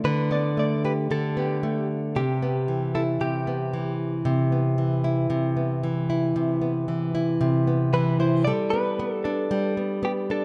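A straight 4/4 pulse carries this carefree, sunny snippet of acoustic pop, cut from a longer piece. A small, up-front nylon-string guitar fingerpicks the accompaniment throughout, with audible finger squeaks, moving from Gadd9/D to Cmaj7 and later settling on Gadd9. Above it, a clean, direct-recorded electric guitar plays a picked, compressed melody, sitting lower in the mix than the nylon guitar. The electric guitar carries the tune at the start, drops out at 4.0 seconds, and returns at 7.9 seconds. A moderate, lush hall reverb surrounds the parts, giving the rough home-demo mix a warm, spacious glow.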